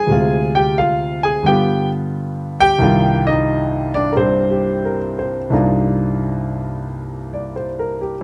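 A clear, intimate grand piano plays solo jazz in C minor at 88 BPM with a swung 4/4 feel, moving through Dm7b5, G7 and Cm11 across roughly 8.2 seconds of a smoky, late-night fragment cut from a longer piece, its audible action noise caught up front by close, detailed microphones in light reverb.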